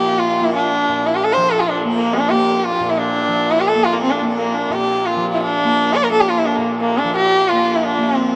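Set in a straight 7/4 at 173 BPM that gradually speeds up, this serene, radiant Hindustani raga Yaman in Bb, cut from a longer piece, features a nasal, earthy bowed sarangi up front with light vibrato, gliding portamento and sympathetic strings, carrying the melody from Bb3 to D5 over a softly plucked, buzzing, shimmering tanpura drone, all bathed in a vast, echoing reverb with a 9.1-second tail across its 8.4 seconds.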